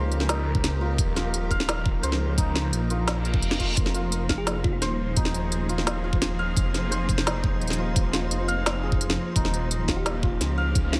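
A half-time groove at 172 BPM drives this dark, tense drum and bass fragment in F minor, where a knocking, overdriven electronic kick pairs with a woody snare and smooth hats that sit up front beneath a swirling, thick phased saw bass, while a lush bowed cello section pumps through sustained chords, a bright hammered santur rings out delayed arpeggios, a grainy flickering texture hovers in the background, a round, tine-like synth pluck with dub echo surfaces only in brief moments such as 4.4 and 10.0 seconds, and a reverse cymbal rises at 3.2 seconds just before the harmony moves from Eb to Fm.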